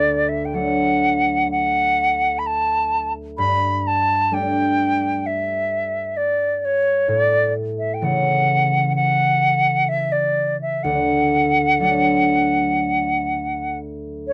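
Celtic folk slow air at 64 BPM in D major, nostalgic and wistful, where an airy wooden flute carries the rubato melody up front with tongued, expressive vibrato over a bright, ringing concert harp fingerpicking the accompaniment through D, Gsus2, A and back to D, all captured in a dry, close 1970s-style studio sound with light reverb across this 14.3-second passage from a longer piece.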